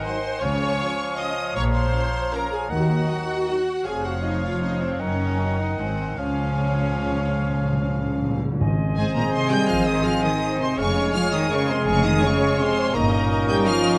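A moderate recital-hall reverb surrounds this festive, elegant excerpt of a classical orchestral ballroom waltz in a rubato 3/4 at 141-178 BPM, where a clear violin section carries the melody over rich violas, a warm bassoon, a soft-edged French horn section, a rich double bass section and a distant cello section, while an oboe, a hollow flute, a mellow clarinet and a lush background violin section weave second lines, round soft-mallet timpani fill from 6.2 seconds, and a tight trombone section and very quiet trumpet stabs join at 8.6 seconds as the key moves from Db major to Ab major.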